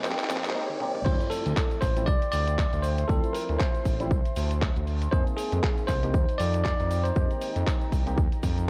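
A swung 4/4 deep house groove, cut from a longer piece, opens with a brief build-up: a drum fill on a gritty, sampler-style soul kit, a riser in the background, a filter sweep, and a barely audible shimmer of string-machine violins, while hollow, percussive organ stabs with tape echo, a saturated synth bass and a deep, moody pad all pump with the sidechain. At 1.1 s the drop lands as a punchy, overdriven electronic kick comes in up front over the kit's handclaps, hi-hat, toms and crash and a grainy egg shaker in the background, both of which have played from the start. Meanwhile a bell-like, clean tine electric piano carries the melody from 1.0 s. The mood is hypnotic and smooth, and the whole mix has a cassette-tape tint with light reverb.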